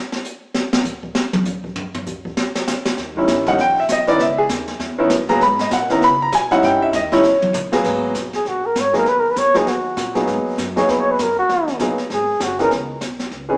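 Heard through a small-speaker sound in a wet, live-room studio reverb, this cool, swinging small-group swing and bop excerpt opens with a brushed drum solo over dark cymbals, a high-tuned snare and a boomy kick, before a woody, growly pizzicato upright bass enters at 3.0 seconds and an up-front, clear grand piano at 3.2 seconds, with a mellow, breathy flugelhorn carrying the melody with vibrato and scooped notes from 8.3 seconds.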